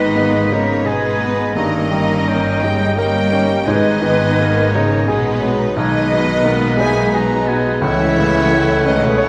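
Classical romantic music for piano and orchestra in G# minor, brooding and passionate, moving at 86 BPM in 3/4 with a rubato feel in this short passage cut from a longer piece. A clear, polished piano carries the melody beside a lush violin section with vibrato, while bright oboe, pure silver flute, mellow clarinet and a second violin line weave countermelodies over bassoon and expressive viola with portamento, soft-attack French horns holding chords, and a rich cello section with a distant double bass section anchoring the bass. Round, soft-mallet timpani are barely audible at 0.0 and 3.7 seconds, and a spacious scoring-stage reverb surrounds the ensemble as the harmony moves from G#m through D#7/G to A/C#.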